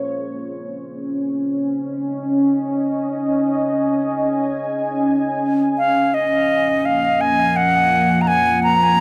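This ambient excerpt opens on a deep, moody pad holding a sustained Bbm7 chord in free time, its detuned sawtooth layers thickened by a sub octave and given a wave-folded, ring-modulated edge under chorus and its own reverb. The pad sits up front and mellow, with a slow attack and long release that keep the Bb minor harmony hanging in a spacious, hazy stillness. At 5.8 seconds a breathy silver concert flute enters, close-miked and expressive, playing a straight-toned, tongued melody between Eb5 and Bb5. Dub echo trails each flute phrase, and the whole piece is bathed in a wet echo-chamber reverb with a 1.8-second decay. The flute and pad carry on together until the cut at 9.0 seconds.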